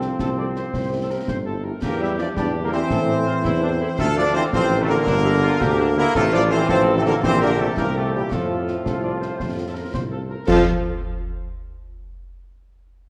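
Spirited and festive, this military-style march for wind band moves in a straight 6/8, cut from a longer piece, with a punchy, tightly drilled trumpet section carrying the melody while a smooth-topped woodwind section and a background euphonium with vibrato supply second lines. A mellow, soft-edged French horn section adds very quiet accompaniment, a dark, distant trombone section holds sustained chords, and a solo tuba anchors the bass, with concert snare, bass drum and dark-toned clash cymbals marking the march throughout. The sound is dark and roomy, set in a wet scoring-stage reverb, and the harmony passes through minor colours before settling home on F at 8.3 seconds.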